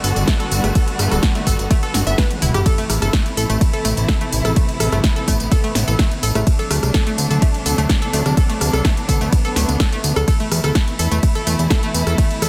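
Lightly reverberant digital ambience surrounds a dense, heavily limited modern master in this driving, dreamy progressive house passage, cut from a longer piece. An overdriven electronic kick, deep and up front, enters at 0.3 seconds and runs to 12.3 seconds. It sits beneath a deep house kit of punchy snare, metallic hi-hats, ride cymbal, rim click, tambourine and toms, which plays a brief fill at 2.3 seconds. A fat, tube-saturated analog bass, sawtooth and wave-folded with a mellow sustain, pumps against the kick, and a round, chorused analog pluck spins bright arpeggios through tape echo. Behind them a distant chamber string section holds dark, expressive bowed chords with vibrato, pumping too as the harmony moves from Gmaj7 through Am and D7 to Esus4.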